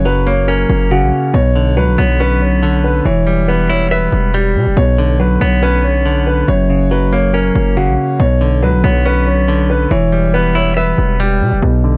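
Drill hip hop in a cold, tense half-time feel, this brief excerpt pairs a dark, boxy grand piano melody carrying tape echo and long sustain with an up-front, clean, hollow-bodied electric guitar accompaniment under a low-pass filter, all anchored by a punchy, heavy 808-style bass with a noise layer and fast attack, set in studio reverb over a brooding cycle of F#, Bmadd9 and Em chords.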